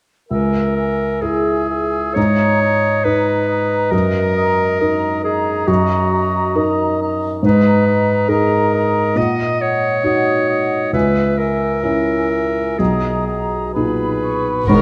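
A felt-muted upright piano with audible action noise opens this sorrowful, bittersweet cinematic passage in a free rubato, with a bright, up-front solo clarinet, an airy large flute ensemble and a mellow cor anglais weaving second lines over it in a moderate scoring-stage reverb, until at 14.7 s lush, vibrato-rich violin, viola, cello and double bass sections and a distant French horn section enter just as the cut ends.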